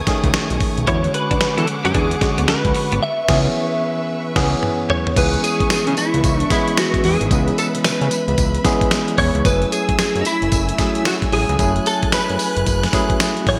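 A swung, bouncy 112 BPM new jack swing groove from a gritty, compressed sampler-style drum kit with a thumpy kick, tambourine and gated reverb drives this punchy R&B excerpt, joined by a fat, saturated analog bass, a clean tine electric piano, lush bowed strings with vibrato and shimmer reverb, a direct-recorded clean guitar melody entering at 0.9 seconds over chords from B13 to F#m9, a background picked guitar riff that stops at 3.0 seconds, and a band accent with a drum fill before the second section at 5.2 seconds, all in a bright 1980s-style digital hall.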